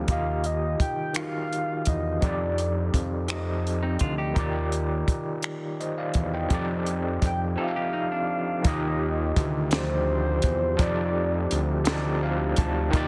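A dense, heavily limited modern master with light reverb frames this slow six-eight R&B fragment at 56 BPM in Eb major, and the mood is sensual and tender. Up front, an overdriven tine electric piano, barky and gritty through a combo amp with fast tremolo, carries the accompaniment. Alongside it, also up front, sit a fat, detuned sawtooth analog bass with a filter pluck and a compact cocktail drum kit of finger snaps, hi-hat, punchy kick and high-tuned snare, dark and rolled-off on top, with soft clipping on the snare. A round, octave-layered synth lead built from triangle and sine tones, treated with chorus, phaser and vibrato, sings the melody in two phrases. A clean, fingered semi-hollow electric guitar adds a second line from 3.8 seconds, and a very quiet, mellow French horn section enters at 8.6 seconds with sustained chords. The harmony moves between Ebadd9, Ebmaj9 and F13, and the electric piano plays a short fill near 11.9 seconds.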